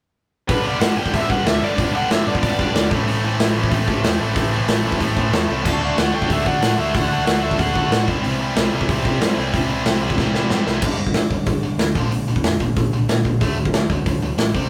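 Driving straight 4/4 at 186 BPM, this rebellious, rowdy punk rock excerpt in G major sets a big acoustic drum kit up front, with a punchy kick and medium-tuned snare, over a dark, round hollow-body picked bass and two tight distorted guitar riffs, one tucked in the background, while a bright overdriven lead guitar plays short melodic phrases starting at 0.5 and 5.7 seconds, until a drum fill at 10.2 seconds ushers in a new section where the background guitar drops out, all captured as a rough rehearsal-room recording with light reverb.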